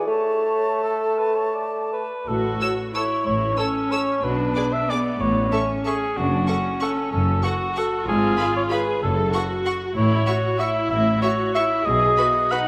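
A mellow cor anglais stands out from the first moment, sitting up front with a smooth top as it carries a second line through the whole of this sweeping, elegant orchestral ballroom waltz, cut from a longer piece and moving in a rubato three. For the opening 2.1 seconds it is joined by a dark, distant clarinet, an airy silver flute with vibrato and a soft attack, and a roomy, mellow bassoon, giving the start a soft woodwind glow. At 2.3 seconds the strings enter: a rich, distant viola section fills in the accompaniment while rich cellos and clear, intense double basses lay the bass beneath it. From 2.6 seconds a clear violin section carries the melody high above, with a rich violin section playing a second line in the background, all bowed smoothly with vibrato. The harmony drifts from the home chord into minor colour and diminished passing chords before settling on B, and a wet scoring-stage reverb gives the ensemble a spacious, polished sheen.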